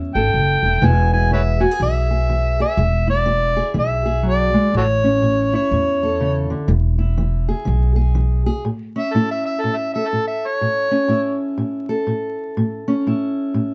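A dark, boxy fingerpicked parlour guitar and a woody pizzicato upright bass open this soulful, swaggering acoustic country blues, cut from a longer piece, with a swung feel, light reverb and a layer of vinyl crackle. An amplified, gritty overdriven harmonica carries the melody up front in a jazz style, with light vibrato, tongue slaps and scooped notes bathed in plate reverb. The bass stops at 8.5 s, and the harmonica takes a solo from 8.7 s over the guitar.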